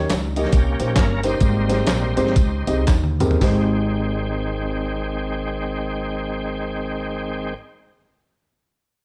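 A jubilant, reverent uptempo gospel excerpt with a swung feel opens on a dark, mellow grand piano in the background and a woody pizzicato upright bass, joined at once by a gritty, compressed sampler-style drum kit with a thumpy kick and by soft handclaps, tambourine and egg shaker, while a bright, shouting tonewheel organ with slow rotary speaker, light overdrive and key click takes a solo up front as the tempo slows, until a drum fill at 2.9 seconds ends the drums by 3.6 seconds and the organ carries on over piano and bass in light reverb.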